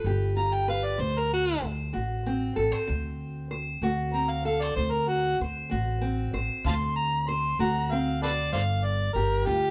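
A slow, straight 12/8 pulse at 64 BPM, counted in dotted quarters, carries this laid-back, soulful acoustic country blues, cut from a longer piece and moving from G7 to a long stretch of D7. A boxy, dark parlour steel-string guitar fingerpicks the accompaniment alongside a woody pizzicato upright bass. From 0.4 seconds, an amplified, overdriven harmonica sings a gritty, jazz-style solo up front, with light vibrato, scooped notes and tongue slaps, all heard as a band playing live in one room with moderate studio reverb.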